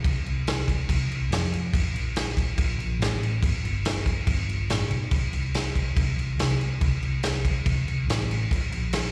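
Folk rock with a heartland rock lean, this short cut from a longer piece feels warm and nostalgic in a straight 4/4. A loose indie drum kit sits up front with a tight kick, a medium-tuned snare and crash cymbal, its sound gritty and saturated with a rolled-off top. Beneath it, a hollow-body short-scale electric bass played with a pick stays low and round, dark and amped, and the whole performance comes across as a live gig heard through the venue's PA with recital hall reverb.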